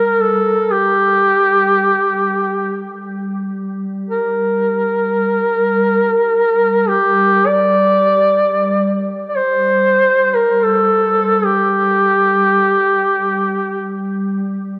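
A mellow duduk sings a longing lament up front with vibrato, ranging from G4 to D5 in free time and G minor, tuned to A4 = 439 Hz, before falling silent at 14.0 s. Beneath it, a glassy, ethereal FM pad holds a G3 drone with slow attack and long release, colored by ensemble chorus, built-in reverb and phaser, lingering until 14.8 s. This solemn Caucasian folk piece sits in a cathedral-like reverb and carries the warbling pitch drift of worn old cassette tape, heard as a fragment of a longer work.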